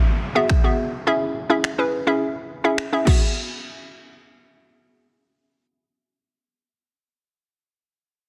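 A hollow, bouncy square-wave pluck with chorus and sidechain pumping opens this carefree, upbeat dance-pop fragment over an electronic downlifter, as an up-front pop drum kit of punchy kick, finger snaps and crash cymbal joins at 0.5 s and stops at 3.2 s, while the pluck carries its Eadd9 and C#m chords on to 7.1 s in light digital reverb.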